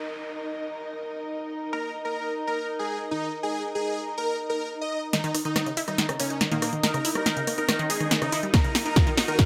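A driving, hypnotic psychedelic trance excerpt at 141 BPM in straight 4/4, where a dark, con sordino string section pumps under sidechain from the start and a resonant, overtone-sweeping drone on Eb4 joins it at 0.3 seconds, pumping likewise. A huge, thick supersaw melody with phaser and delay takes the lead from 1.7 seconds, and a build-up from 5.1 seconds brings in a punchy, warbling unison pluck riff with dub echo, a tape-warm techno kit with a low-passed snare and hats playing a fill, and finally a heavy, up-front kick at 8.5 seconds, framed by a very quiet downlifter and riser in a moderate digital room.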